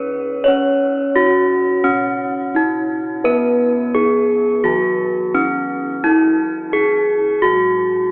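Javanese gamelan in a ceremonial, serene mood, this short passage cut from a longer piece has a dark, smooth bronze metallophone struck with a horn mallet carrying the melody up front, a quieter, boxy metallophone played with a wooden mallet in the lower register, and round, mellow bossed gongs with padded beaters holding the bass, all heard across the full 8.1 seconds through a long cathedral reverb and a telephone-like sound.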